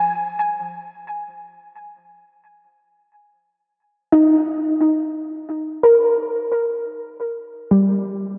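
Floating in free time, this short ambient fragment of a longer piece drifts by at a reflective, spacious pace. A single soft, round synth pluck carries it alone from start to finish, ranging from F3 up to Ab5 and sitting up front in the mix. Its tone blends triangle, sine and sawtooth waves with a noise layer, and each note has a fast attack that decays into a dark, gentle glow shaped by a filter sweep. Lush chorus and analog delay thicken the pluck, while a long hall reverb soaks the whole dreamy sound in space. The harmony rests on F minor before shifting to a Bb5 chord at 2.7 seconds, where a second passage unfolds until the fragment ends at 8.4 seconds.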